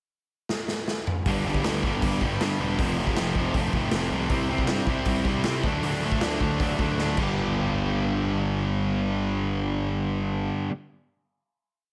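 A fast, straight punk groove kicks off this short, rowdy punk rock piece, with a drum fill opening the pickup bar at 0.5 seconds. The raw garage drum kit sounds gritty and up front in a bright stone room that pumps with the beat, pairing a boomy kick and medium-tuned snare with hi-hat, crash cymbal and toms. At 1.3 seconds two distorted guitars and a fuzz bass crash in together, driving eighth notes through a G, F, C, D verse. The tight guitar hammers bright power chords, while the sludgy guitar's overdriven barre chords sit mellower beside it. Underneath, the picked electric bass adds a growly, overdriven low end. The drums stop after a second fill, and the guitars and bass ring out a final G hit that closes the piece just before 11 seconds under light reverb.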